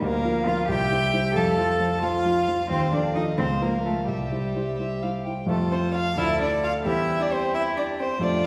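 This short, spirited classical-period movement for piano quartet opens with the whole ensemble sounding together from the first moment, in a cheerful F major, moving quickly at 88 dotted-quarter beats per minute in a straight 6/8. A single bowed violin carries the melody with a soft attack and a pure, floating sul tasto tone, while a second violin, played the same way, plays a supporting line beneath it. The cello adds another line, bowed sul tasto with a close, slightly nasal colour. The concert grand piano provides the accompaniment up front, with a deep bass and a short sustain. The harmony passes through Bb/D, C and F, then F7/Eb and Bbm/Db, before the music moves into a new section at 5.5 s, touching F, Dm and C/E. A wet recital hall reverb places the ensemble further back in the room, and the passage is cut from a longer piece, ending at 8.5 s.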